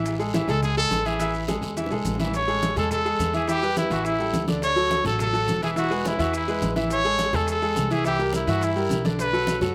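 A dry outdoor recording with little reverb captures a sunny, danceable salsa excerpt at 210 BPM in A major, where a punchy, vibrato-laden trumpet with slapback echo carries the melody up front from 0.5 seconds over a brilliant, open baby grand piano and a woody, thumpy pizzicato upright bass on gut strings, while damped, low-tuned congas, a raspy guiro and grainy maracas sit in the background alongside very quiet, distant, tight high-tuned bongos, and a drum fill at 1.8 seconds leads into a new section at 2.3 seconds.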